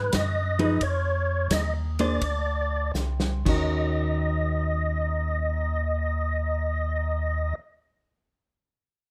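Bluesy and smoky, this short soul jazz organ trio excerpt swings in 4/4 at 78-89 BPM in Eb dorian, slowing over its opening bars as a fat, lightly overdriven tonewheel organ carries the melody with third-harmonic percussion, key click, chorus vibrato and a slow rotary speaker; a piping, scooped organ bass line, also through a slow rotary, sits beneath; a clean, picked, compressed hollow-body electric guitar comps from 0.6 s; and a vintage kit with a punchy kick and a rolled-off top plays a fill from 2.9 s before falling silent at 3.6 s, all captured dry and close with every part up front.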